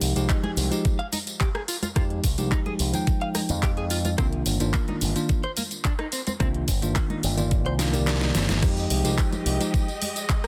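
A straight groove drives this groovy, sleek nu-disco excerpt: a knocking, overdriven electronic kick sits up front with a pop drum kit built on a deep snare, hi-hat, handclaps, rim clicks and tambourine, while dry, ringing cabasa and congas sit in the background, an up-front, envelope-filtered picked bass bubbles beneath a bell-like electric piano pumping with sidechain and delay, and a clean, chorus-drenched guitar riff adds polish, until a drum fill at 7.8 seconds and the kick dropping out at 8.1 seconds lead into a drop at 8.6 seconds, where a dark, woody bowed string section enters with sustained chords, all in a dense, heavily limited mix with little reverb.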